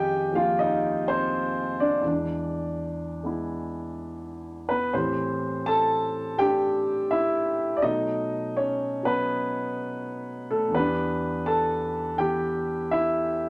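Cool and late-night, this short solo jazz passage, cut from a longer piece, sets a concert grand piano alone and up front, its warm tone anchored by deep bass and long sustain. The swung eighths drift through Fm9 and E7 before settling at 4.9 s into a minor-key stretch of Am7, B7 and Em7 that runs to 13.5 s. A moderate studio reverb gives the piano a modest sense of room.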